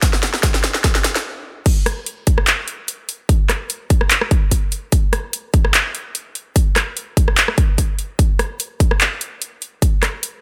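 A punchy, overdriven electronic kick drum sits up front in this emotional, bittersweet future bass passage, cut from a longer piece and moving at 147 BPM in 4/4 with a half-time feel and a light 16th-note swing. Beside it, a layered big-room dance drum kit brings a huge snare, metallic hi-hats, handclaps, rim clicks and crash cymbals, also overdriven and placed close, with filtering thinning the low end of its hats, snare and cymbals. A drum fill opens the build-up and runs to 1.3 seconds, then a brief stop holds the tension until the drop arrives at 1.7 seconds. From there the kick and kit carry the drop together, both bathed in studio reverb within a digital ambience. The sound is heavily produced and layered.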